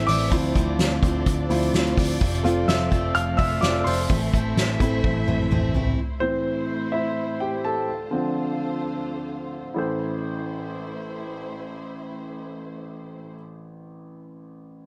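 This earnest, dramatic piano-driven pop cut in A minor at 127 BPM opens on a polished, up-front grand piano that carries a solo line over Dm7, F and Am chords, with a lush, bowed string section holding distant vibrato chords, a full-bodied jumbo acoustic guitar picking a riff with audible finger squeak in the background, and a round, foam-muted vintage electric bass. A soft-mallet drum kit with a punchy kick and a fat snare plays in a roomy studio space and delivers a fill from 5.0 seconds, after which drums, bass and guitar drop out at 6.0 seconds. The piano continues its solo with the expressive strings, which stop at 13.4 seconds within the light studio reverb, and the warm piano rings on alone to the cut.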